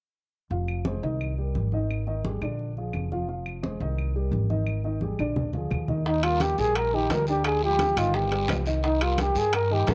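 A small room with moderate spring reverb frames this lively, sophisticated Afro-Cuban jazz cut from a longer piece at 173 BPM in Eb major, where a dark, mellow grand piano, an up-front woody pizzicato upright bass and thick-skinned congas run from 0.5 s, joined by vintage claves at 0.7 s, through a drum fill that closes at 6.1 s. Then a breathy, whispered, close-miked trumpet solo with vibrato arrives alongside tight high bongos and a raspy guiro, with ringing metal-shell timbales following at 6.2 s, over chords moving from Ebmaj7 through Ddim and Gaug to Cm7.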